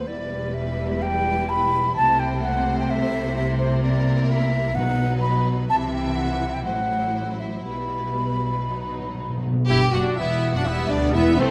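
Classical orchestral music with an urgent, restless mood in a fast romantic movement, where lush bowed violins carry the melody under an airy, hollow flute line placed up front, distant violas and a second violin line sit in the background over rich cellos and woody double basses, round soft-mallet timpani sound at 4.8 and 8.7 seconds, and dark, tight horns and clear trumpet stabs enter at 9.7 seconds, all in a reverberant concert hall.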